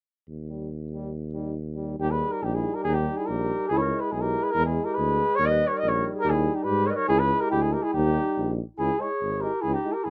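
A straight two-beat pulse drives this bittersweet, virtuosic Balkan folk fragment, with a mellow, soft-attack tuba up front on the bass from 0.3 seconds, joined at 0.5 seconds by a clear, close-miked trombone in the background and a very quiet, dark euphonium with a smooth top in the accompaniment. At 2.0 seconds a distant, roomy flugelhorn takes the melody up front while a shadowy, gently attacked clarinet adds a second line, each part played in a classical style. Light reverb sits over a rough home demo mix.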